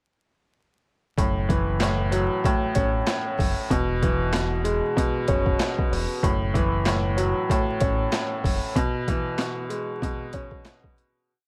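Boom-bap hip-hop at 95 BPM with a swung 16th-note feel, reflective and dark in F# minor, built on a bright, woody upright piano that loops a pedal-note arpeggio in eighths over F#m7 and E6, with audible action noise and a cassette-tape tint; a round, deep fingered electric bass line that drops out at 8.6 s; and a gritty, compressed, pitched-down sampler-style kit with a thumpy kick and a high-tuned snare layered with clap on the backbeat, overdriven and re-recorded in a large room, set in light reverb and vinyl crackle until the break and fade-out from 8.8 s.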